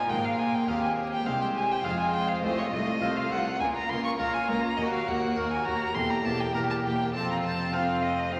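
In a straight four-beat pulse, this stormy, dramatic excerpt from a baroque-style concerto movement places a single expressive violin up front, its rich, soft-attacked melody colored by vibrato and portamento, above a smooth violin section also carrying the tune in the background, while a clear, intense second violin section and viola section fill the inner lines, a bright, airy French-style harpsichord plucks its accompaniment, and a distant cello section and lush, focused symphonic double basses hold the bass, the ensemble set in a long, wet concert-hall reverb with a layer of vinyl crackle.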